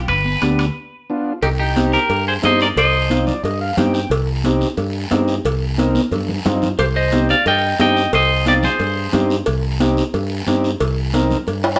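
Cumbia at a fiery, passionate 179 BPM in C minor, this excerpt moves from a G7 opening with a break at 0.8 seconds into a Cm groove where a round, dark fingered bass and a mellow, overdriven combo organ with light vibrato sit up front beside a twangy, spring-reverbed clean guitar melody, while raspy guiro, ringing metal-shell timbales and cowbell, and thin-skinned, high-tuned congas drive the rhythm, with an organ fill at 3.1 seconds and a drum fill at 6.0 seconds, all played live in one room.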